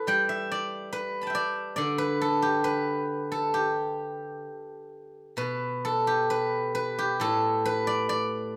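Flowing and elegant, this short fragment of Chinese traditional solo plucked-string music moves in a free, rubato 2/4 at about 63-71 BPM in the G gong mode. A lone acoustic steel-string zither, played with fingerpicks, carries the whole piece across a span from A2 to B5, its silvery, ringing tone placed up front. Light reverb gives a sense of a single live room, and the music turns to a new passage at 5.4 seconds before the clip ends at 8.6 seconds.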